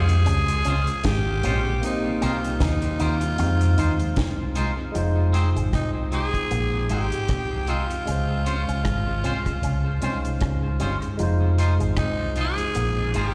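A swung lovers rock reggae groove at 77 BPM in F minor carries a smooth, bittersweet mood, as a raspy, growling tenor saxophone sings the melody over a dark, round, foam-muted bass up front, a dry, deep drum kit with a high-tuned snare and tight kick, a barky, lightly overdriven tine electric piano, clean twangy guitar stabs, a background guitar riff through an envelope filter and a very quiet tonewheel organ on slow rotary, all heard through a live venue PA with recital hall reverb in this short cut from a longer piece.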